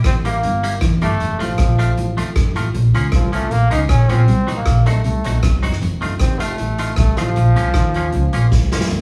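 A straight, driving 4/4 ska groove, cut from a longer piece, is carried by an up-front street-band drum kit with a boomy kick, medium-tuned snare, rim clicks and hi-hat, alongside a woody pizzicato upright bass and a slightly broken-up electric guitar riff sitting low in the background. A brilliant, forceful trombone leads the melody with light vibrato, while a bright, twangy clean electric guitar adds picked accompaniment over minor-key changes. The energetic band sounds like it is playing live in one room, with a large, wet reverb and vinyl crackle, and the drums close the section with a fill at 8.5 seconds.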